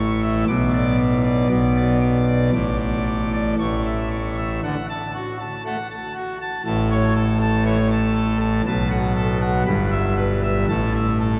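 Majestic and jubilant, this classical organ toccata is a brief cut from a longer piece, played on a solo pipe organ with full registration from the opening moment. The baroque voicing stacks bright mixtures over a deep bass floor, spanning G1 up to D6, and each note speaks with a distinct chiff that keeps the brilliant sound crisp and up front. The harmony moves from B minor through open fifths toward a triumphant D major arrival at 4.6 seconds, where a second section begins and presses on through B and E minor colours before closing on an open A sonority. A cavernous cathedral reverb with a five-second tail surrounds the instrument, letting every chord bloom and hang in the air. The production leans dark and warm, and a layer of vinyl crackle gives the whole recording the feel of an old, well-loved record.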